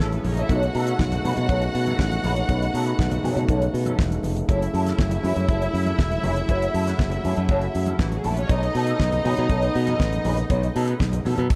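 A bright, growly fingered electric bass drives this sultry disco excerpt from up front, joined by a dry 70s drum kit with a fat snare and tight kick, a dark, clean picked electric guitar colored by wah and chorus, an intense bowed string section with light vibrato, a mellow French horn section holding sustained chords in the background, and very quiet, distant congas, all in light reverb as the harmony moves from B9 to F#m7 and back.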